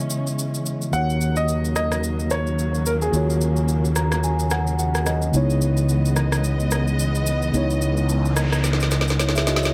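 Amapiano at 109 BPM with a hypnotic, late-night swing, cut from a longer piece, where a mellow tine electric piano and lush bowed strings with vibrato and portamento hold Dbm9 and Ebm9 chords over a shaker, rim click and woody snare, a punchy, bright fingered bass enters at 0.9 seconds alongside an intimate baby grand melody with audible action noise and delay that stops at 3.8 seconds, and a background noise sweep arrives at 8.0 seconds ahead of a closing drum fill, all in a dry, close sound.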